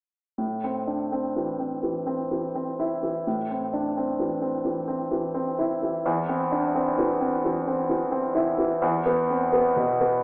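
A slow, rubato 3/4 at 64 BPM carries this elegiac, melancholic classical fragment in A minor, where a dark, mellow concert grand plays an accompaniment with deep bass from 0.4 to 10.2 seconds, moving from Am through Cadd9/E to E5 in a recital hall reverb whose distant, telephone-like sound sets it further back in the room.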